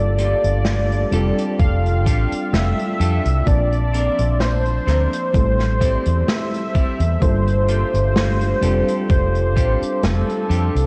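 Vaporwave at a slow 64 BPM with a lightly swung 4/4 feel, this faded, nostalgic fragment drifts through lush jazz chords from Gm9 to Bbmaj9 and Am7, with a velvety, detuned synth lead carrying the melody up front over a mellow FM electric piano and a warbling, lo-fi pad phasing in the background. A woody, round fretless bass sits forward with analog chorus, a dark clean guitar riff enters at 0.2 seconds under subtle tape echo, and a distant, roomy acoustic kit of hi-hat and snare played with bundle sticks joins then, while a thumpy, overdriven electronic kick plays from 1.6 to 9.8 seconds. The whole mix is soaked in plate reverb and cassette tape haze, with lossy compression artefacts and 12-bit sampler grit on the drums deepening the worn, dreamlike tone.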